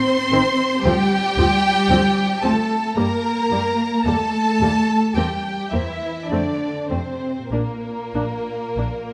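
In a rubato three-four sway, this tender, slow romantic passage for string orchestra floats a lush, expressive violin melody with soft attack and a smooth top over a second violin line, an even viola accompaniment, a dark, woody cello bass and double basses that enter at 0.3 seconds, all bowed with vibrato and set in the moderate reverb of a scoring stage.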